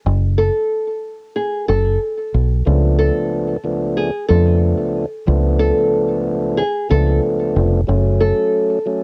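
A swung sixteenth-note boom-bap groove in 4/4 sets a dark, gritty mood in this hip hop cut from a longer piece. It opens on a break where a round, foam-muted fingered electric bass sits up front beneath a small, woody nylon-string guitar melody, fingerpicked on old strings and shaped by filters, cassette tape and tape echo. At 2.7 seconds a clean tonewheel organ with key click and a stopped rotary speaker joins as accompaniment, as the harmony moves from F#m to C#7b9b13 before returning to F#m at 7.9 seconds, all inside the light reverb of a home cassette recording.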